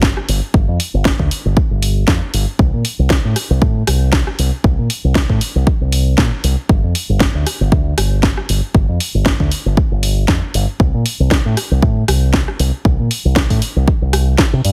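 Nu-disco in G minor at 117 BPM, this short cut from a longer piece rides a groovy, sleek 4/4 feel with a light 16th-note swing. A fingered electric bass with an envelope filter carries the low end from start to finish, sounding direct and amped with tube saturation and sidechain pumping, ranging from G1 to C3. An electronic kick drum sits up front with a punchy, overdriven, layered character and studio reverb, running until 14.5 seconds. A house drum kit supplies a cracking snare, bright hi-hats and rim clicks, likewise overdriven and placed forward in the mix with studio reverb. The overall sound is dry and heavily compressed, with a radio-style density that keeps the groove tight and present.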